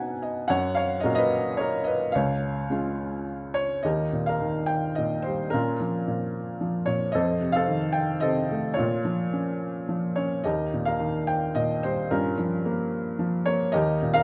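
A brief fill on a felt-muted upright piano opens this relaxed, sunny excerpt of lyrical classical solo piano in three, where the intimate, mellow instrument sits up front in a moderate concert hall reverb and moves with rubato through chords such as Gb, Db, Eb, Bbm and F7 before reaching Gm7b5 at 12.1 seconds.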